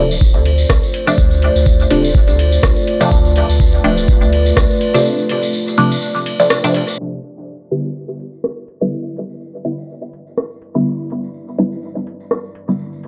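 A dark, moody analog pad and a muted, nasal dub chord stab open this nocturnal, deep dub techno piece, cut from a longer work. The pad holds detuned, wave-folded sustained chords with a slow attack, lush chorus and sidechain pumping. The stab sits up front with a resonant filter pluck, a phaser, a cassette-tape character and dub echo. A jingly acoustic tambourine and a booming, overdriven analog drum machine with metallic hi-hats, ride cymbal and rim clicks join almost at once. An overdriven electronic kick and a soft, round sub bass drive the groove over a Dm7 chord until 4.7 seconds, when both drop away and a break follows. From 7.0 seconds the harmony shifts to Em7, and filter sweeps move across the stab and the pad in a dry, gritty hardware sound with light reverb.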